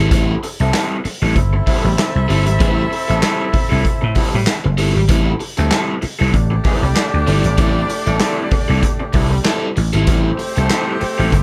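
Funk in A minor at 96 BPM, this sly, cool fragment from a longer piece rides a light sixteenth-note swing in 4/4, tuned slightly flat to A4 = 438 Hz. A vintage slap bass sits up front with a growly, punchy, amped electric tone, while a vintage drum kit of kick, snare, hi-hat and handclaps joins at 0.1 seconds with a boomy kick, a medium-tuned snare, a rolled-off top and a pumping small-room sound. A raw garage guitar plays picked, overdriven accompaniment through a phaser, also placed up front. At 1.4 seconds a tight horn section enters as a second line, pop style with vibrato and octave doubling and a warm blend. The whole passage rests on a single Am7 chord, and the mix stays dry and close with little reverb.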